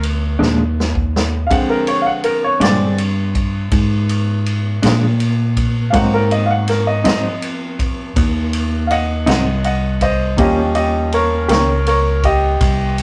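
Slow blues in a straight 12/8, gritty and laid-back, cut from a longer piece and moving through Bb7, Ab7 and Eb7 changes. A vintage acoustic drum kit with a punchy kick, medium-tuned snare and ride cymbal opens with a fill from 0.4 to 1.5 seconds, its top end rolled off. Underneath, a fingered electric bass sits up front with a round, warm tone. A dark, clean electric guitar, fingered and compressed with tremolo, plays accompaniment until it drops out at 11.7 seconds. From 1.5 seconds, the upright piano takes the solo, woody and intimate with audible action noise and long sustain, close and polished in the mix. The whole is captured as a rough rehearsal-room recording in a small room with moderate reverb and a dulled, muffled top.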